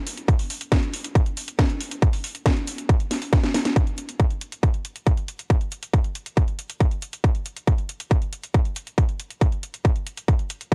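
Intense and alien, this trance fragment cut from a longer piece drives along at 138 BPM in a straight 4/4. An up-front electronic kick drum, layered, distorted and overdriven, pounds ahead of a techno drum kit whose hi-hat and cracking snare carry their own overdriven grit. A drum fill at 3.1 seconds leads into a new section at 3.8 seconds, all set in a dark production with light reverb.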